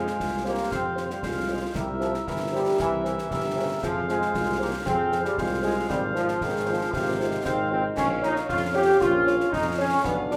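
A straight two-in-a-bar march gives this martial, resolute wind-band passage, cut from a longer piece, its steady footing, with concert snare, bass drum and dark-toned clash cymbals sounding close and dry from 0.1 s. Punchy, mellow trombones hold up-front sustained chords over a soft-edged tuba bass, while a roomy, distant woodwind section with light vibrato and a warm euphonium share a second line, and French horns add background accompaniment. The vintage-toned trumpet section carries the melody so faintly it is barely audible, and a large studio's wet reverb, heard from further back in the room, surrounds the band as the chords move from Fm through C7 to Bbm.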